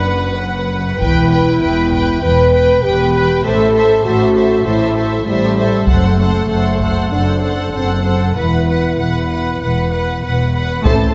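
A dark, epic orchestral film-score passage in E minor opens with the full string body and a French horn section sounding together, moving at 98 BPM in a straight 4/4. The violins carry a vibrato-laden, expressive melody with a soft attack and smooth top, while a second violin line sits distant in the background and a studio viola section supplies even, bowed accompaniment. Beneath them, a lush cello section and a woody double bass section anchor the bass, and the horns hold soft-attacked, lightly vibrato chords that sit prominently in the blend. A close taiko ensemble struck with hard sticks punctuates the texture at 1.0 and 5.9 seconds as the harmony moves through E minor, A minor, an F-sharp diminished chord and an Esus2. At 10.9 seconds a band accent brings in a roomy trombone section and a mellow tuba alongside the taiko, all inside a moderate scoring-stage reverb with a rolled-off, darkened top end.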